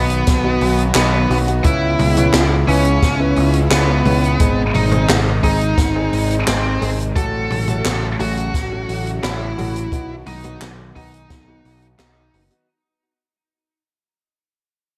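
Synthwave with a moody, driving pulse, this clip from a longer piece pairs a bright, high-gain lead guitar melody, up front with distortion and tape echo, against a picked electric bass that is overdriven and also up front, the bass riding sidechain pumping shared with a smooth, detuned supersaw holding mellow sustained chords in the background, while a grand piano adds short-sustain stabs, a natural-sounding jazz kit with a high-tuned snare, hi-hat, toms and handclaps is bathed in gated reverb over a boomy acoustic kick, and the progression moves from B through C#m7, G# and F#m/A back to B as the whole mix fades out from 5.3 seconds to the end at 12.7 seconds.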